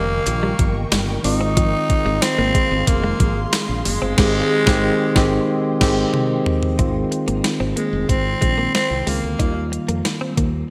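A growling, raspy tenor saxophone leads this uplifting, glossy 1980s-style pop excerpt over tine electric piano, a round, woody fretless bass with lush chorus, a compressed clean guitar riff and an ethereal, detuned pad that drops out at 6.8 seconds. An up-front, overdriven digital drum machine with gated reverb and very quiet handclaps enter at 0.3 seconds, and a band accent and drum fill lead into the new section, all in a bright production with a lush hall reverb.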